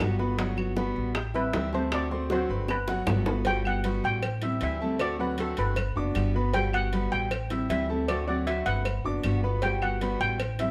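Latin Cuban son in a guajira vein at 156 BPM in G major, relaxed and danceable, cut from a longer piece and cycling through Gmaj7, Am7 and D7 under light reverb. A fingerpicked steel-string acoustic guitar with finger squeak, a clear, slightly boxy baby grand playing arpeggios, and a woody, dark pizzicato upright bass sitting up front carry the accompaniment, while round, low-tuned bongos and cowbell played with soft hands and background claves keep the groove. A bright, shimmering steel pan struck with hard rubber sticks enters at 1.4 s with a solo melody in plate reverb, and a drum fill at 2.7 s leads into the next section.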